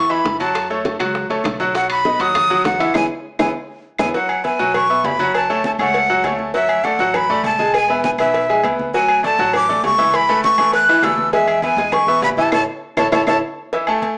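Joyful, sunny salsa at 200 BPM in A major, where a breathy jazz flute with vibrato and a crisp, chiffy attack carries the melody up front over a brilliant, polished grand piano, a thumpy pizzicato upright bass, and background percussion of low-tuned congas, tight high-tuned bongos and cowbell, ringing timbales and agogo bells and very quiet woody claves, with drum fills and band accents at 2.9 and 12.5 seconds, all in a moderate studio reverb with a small-speaker sound.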